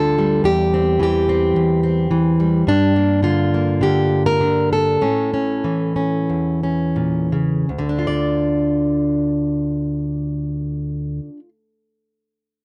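A dry, close 1970s-style studio sound with light reverb frames this wistful, haunting excerpt of solo folk fingerstyle, where a plugged-in steel-string acoustic guitar, fingerpicked and up front with a warm concert tone spanning D2 to D5, moves in straight 4/4 in D minor at 81-108 BPM through C/E, Gm and A, slowing down from 2.7 to 7.7 seconds before settling on Dm at 7.7 seconds as a new section begins.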